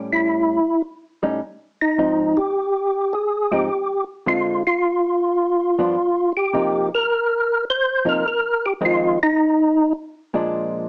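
Jazz with a soulful, swinging feel at 105 BPM, where a fat, percussive tonewheel organ with key click, third-harmonic percussion and a slow rotary speaker with chorus vibrato carries the melody up front over a dark, compressed hollow-body jazz guitar comping through changes like Dm7b5, G7 and Cm7, all heard with light reverb and a small-speaker character in this short cut from a longer piece.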